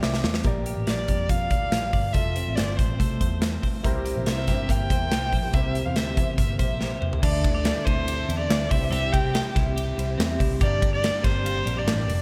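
A straight, steady 4/4 pulse drives this youthful, nostalgic slice of jangly indie pop, carried up front by a big rock drum kit with a punchy kick, medium-tuned snare and bright cymbals, opening with a drum fill alongside a short upright piano flourish. Beneath it, a dark, round, foam-muted electric bass holds the low end, while a clean, twangy twelve-string electric guitar with tremolo spins compressed arpeggios in the background. A focused, bowed violin enters with the melody at 0.9 seconds, its vibrato adding a singing quality, and a fingerpicked twelve-string acoustic guitar, boxy and shimmering with subtle chorus and a swinging lilt, settles back into the accompaniment at 3.8 seconds. A woody, intimate upright piano with audible action noise and long sustain sits in the background of the first half, stopping just after another drum fill leads into a new section at 7.2 seconds, where a metallic, ringing vibraphone played with hard mallets adds a vintage, band-limited second line. 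Light reverb gives the mix a gentle sense of space, and the piece is cut from a longer work.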